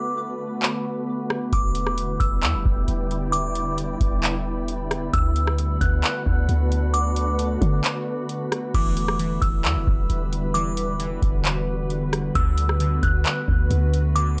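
Dreamy and blissful, this atmospheric cloud-rap excerpt floats in half-time over a booming, up-front analog drum machine with a deep kick, metallic hats, handclaps, rim clicks and crash cymbal, joined at 1.5 seconds by a clean, boomy 808-style bass. A crystalline, warbling synth bell carries the melody with chorus, tremolo and tape echo above an ethereal FM pad whose ensemble chorus, reverb and sidechain pumping give it a breathing sway, while a breathy, wind-like noise texture drifts in the background from 2.3 to 8.7 seconds. At 8.7 seconds, airy digital keys take over that background space with chorused, tape-echoed arpeggios as the chords move between Em7 and D6 in a digital ambience.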